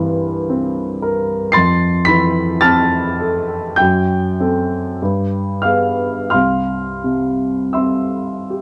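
A baby grand piano opens alone in this brief excerpt from a romantic classical nocturne, its natural, long-sustaining tone sitting up front as it spans the keyboard from C2 to C7. The mood is dreamy and tender, moving in a slow, rubato 4/4 at roughly 41-56 BPM in C major, with harmonies drifting from C7 through Fmaj7, F#dim and G7b9 before settling on C at 6.3 seconds. A moderate large-studio reverb gives the piano a gentle sense of space.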